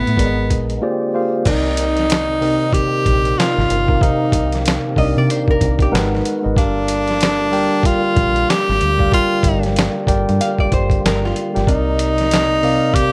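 A swung sixteenth-note groove at 94 BPM in 4/4 drives this relaxed, sensual slice of neo-soul R&B, cut from a longer piece and pausing in a brief silent gap at 0.8 seconds before settling into its main section. A gritty, compressed boom bap kit sits up front with a thumpy kick, medium-tuned snare, hi-hat, handclaps and crash, joined by a dark, round, punchy fingered electric bass. A breathy, close-miked tenor saxophone carries the melody in a clear jazz style with scooped notes, over a mellow tine electric piano playing clean accompaniment through its built-in speakers. Beneath them, a very quiet, lightly overdriven tonewheel organ holds fat sustained chords with key click, percussive second-harmonic attack and a slow rotary speaker. A hollow-body archtop guitar adds short picked second lines with slapback echo at 5.0 and 10.4 seconds, as the harmony moves through chords such as Cm7, Abm7 and Gm7 in a dry, intimate sound.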